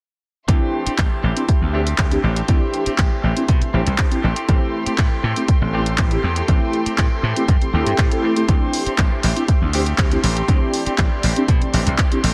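A steady, straight 4/4 groove at 120 BPM drives this sensual, groovy slice of filtered disco house, anchored by an overdriven, up-front electronic kick and a punchy analog drum machine supplying handclaps and pumping hi-hats with the air of a large room. A bright, punchy slap bass and a twangy, scooped clean electric guitar riff ride the sidechain pump beneath a low-pass filter, while round, detuned synth brass with chorus, phaser and tape colour carries the accompaniment and a dark, sul tasto chamber string section holds soft-edged chords with a gritty sampler texture. The harmony moves from D9sus4 to Am7 at 4.2 seconds and back to D9sus4 at 8.5 seconds, all set in an echo-heavy digital ambience.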